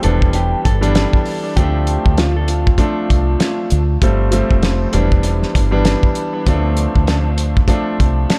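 Moody and tough, this swung boom-bap hip-hop excerpt rides on a thuddy, cloth-damped drum kit with a fat snare and tight kick, a round, punchy fingered dub bass, and a smooth, vintage grand piano colored by cassette tape and analog delay, while a dark, clean electric guitar melody with spring reverb and delay sounds only until 4.0 s, all within a small room and an echo-heavy mix as the chords move through Em7, Dm7 and G9sus4.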